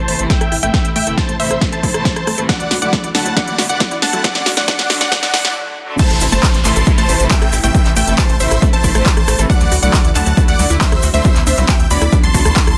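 A huge, detuned supersaw lead carries the melody over a tight sequencer bass, a lush unison pluck line, background pluck arpeggios with 12-bit sampler grit and clear studio strings, all pumping with the sidechain in this euphoric, emotional uplifting trance excerpt in A minor at 137 BPM, where a punchy up-front kick and crisp-hatted dance kit build through a drum fill and filter sweep, with very quiet risers from 2.4 seconds, into a brief break and a drop at 6.0 seconds that brings in a grainy tube shaker over Am and Dadd9 chords.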